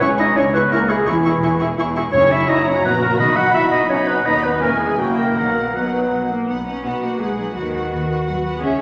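Quick classical-period orchestral music in triple time, lively and graceful with a rubato feel, cut from a longer piece. Muted violins carry a veiled melody above a second violin line in the background, lush con sordino violas, dark cellos and distant double basses. An airy, hollow flute group, an up-front clarinet with a roomy warmth and a mellow, tight French horn section add lines and sustained chords until 6.3 seconds, while timpani struck with hard mallets sound in the background from 2.1 to 5.9 seconds, and a wet scoring-stage reverb surrounds the ensemble.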